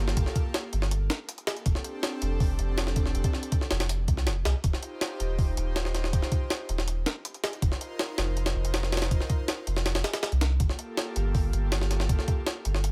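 An airy, breathy pad and a deep, round dub sub bass open this nostalgic, dark drum and bass cut, with a jungle sampler-style drum kit arriving at 0.1 seconds at 161 BPM in a straight 4/4. The drums sit up front, compressed, pitched up and gritty, with a thumpy kick, a high-tuned snare, hi-hat and a tape-warm character in a studio ambience. Beneath them, the soft sub bass holds sustained low notes with a fast attack, its triangle and square wave tone also placed up front. The pad sits quieter in the mix, blending triangle and sawtooth with a noise layer, slow attack, long release and a chorus shimmer as it carries the sustained chords through Gm9, F69, Eb69 and F7sus4 before returning to Gm9. The pad drops out at 12.2 seconds while bass and drums continue to the end of this dry fragment of a longer piece.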